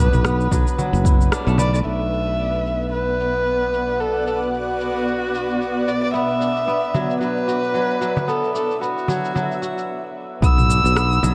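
A dark, warm mix set in a moderate concert-hall reverb with a touch of small-room ambience carries this meditative, hypnotic organic downtempo excerpt in B minor, at 112 BPM with a swung 16th feel. An intimate, up-front kamancheh sings the melody with vibrato and an airy bow through tape echo, while crisp, ringing kora arpeggios pass through digital delay and a blurred, detuned granular cloud pad pumps against the sidechain. A growly fretless bass with tube saturation and subtle chorus anchors the low end, supported by a low-pass-filtered deep house kit of rim click, shaker and toms, a punchy electronic kick, and a small, bright frame drum that returns at 6.9 seconds, with a band accent at 1.3 seconds and a stop at 9.9 seconds.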